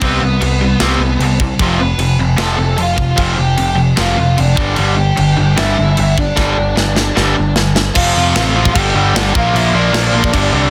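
A dense, heavily limited modern mix with little reverb carries this rowdy, upbeat punk rock cut at 151 BPM, where a double-tracked cranked stack guitar hammers out the riff up front over a growling, overdriven picked electric bass and a tight metal drum kit with bright cymbals and a big-room punch, while a dark, smooth lead guitar with overdrive carries the melody, the drums holding a half-time feel until a fill from 6.4 to 8.0 seconds launches a new section.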